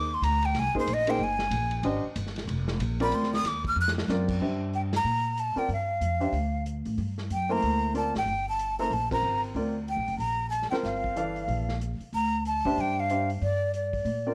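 A swung 4/4 pulse at 187 BPM carries this hypnotic, spiritual modal jazz excerpt, with a dark, smooth vintage drum kit sitting low beneath woody, thumpy pizzicato upright bass and an up-front, natural-sounding baby grand piano in accompaniment. A breathy metal flute with vibrato, a soft attack and lifted highs leads over Fm11, a brief drum fill marks the move to G dorian at 4.4 s, and the band lands shared accents at 4.9 and 9.1 s. The whole recording wears the warbling pitch drift of old cassette tape and light reverb, while plate reverb surrounds the flute.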